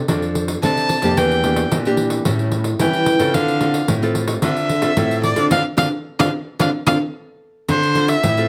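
Close, detailed microphones and light reverb give this short cut from a longer piece an intimate, clear sound, with the bowed erhu sitting up front. It is a nostalgic, bittersweet blend of samba and choro in a straight 4/4 feel, built on a progression that moves from F6 through Em7b5 and A7 to Dm7. A bright, fingerpicked nylon-string guitar in classical style supplies the accompaniment from the first moment, while a second, smaller-sounding fingerpicked nylon-string guitar with a warm tone carries the bass line and enters at 0.1 seconds alongside a jingly pandeiro played with soft hands in a small-room sound. The erhu comes in at 0.6 seconds and takes the solo melody between C5 and A5, its tone clear, nasal and earthy, shaped by light vibrato and portamento from a single player. Between 5.5 and 7.7 seconds the band lands a shared accent beneath the solo.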